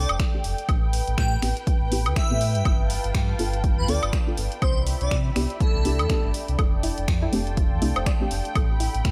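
Opening on vinyl crackle, this smooth, deep house excerpt in A minor at 122 BPM sets an airy, dreamy detuned lead with chorus, tape echo and vibrato over a warm analog pad, a nasal chord stab under a filter sweep, a full sine sub bass and a distant, woody violin section; a warbly lo-fi pad, a swung drum kit of finger snaps, hi-hat and woodblock, and a punchy up-front kick soon join as the sidechain-pumped pad and stab move through Am9, G9 and Cmaj9, before the lead stops at 6.3 seconds and a soft, round pluck plays arpeggios with analog delay from 6.6 seconds.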